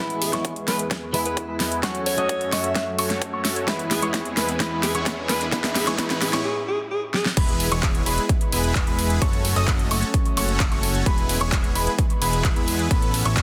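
A festival progressive house excerpt in E major at 130 BPM opens on a build-up: bright supersaw chords under a low-pass filter sweep, a lush, detuned unison pad with 12-bit sampler grit, a dark, mellow grand piano playing high arpeggios in the background, and a clean, direct-recorded electric guitar with ensemble chorus and dub echo, all pumping against the sidechain. An overdriven big-room kit with a huge snare, metallic hats, handclaps and crash rolls through a drum fill, joined by a punchy, up-front electronic kick. At 0.2 seconds a breathy, close-miked alto saxophone carries a jazz-style solo melody with vibrato and dub echo, and from 3.6 seconds a very quiet riser sits beneath the build. After a short break from 6.4 seconds, where the guitar drops out, the drop lands at 7.4 seconds with a fat, saturated analog bass. The chords cycle through E, F#m and Aadd9 in an anthemic, triumphant mood, and the mix is dense and heavily limited with light digital reverb.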